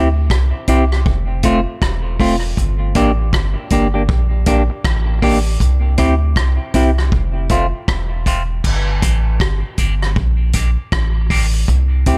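A spacious, heavy studio sound opens this dub reggae excerpt in swung 4/4, where a deep, round sub bass sits up front beneath a clean, hollow-bodied semi-hollow electric guitar carrying dub echo and a filter sweep from 5.6 to 11.7 seconds, while a vintage drum kit with a tight kick, dark cymbals, hi-hat and rim clicks joins at 0.3 seconds over chords moving through C, F and G minor.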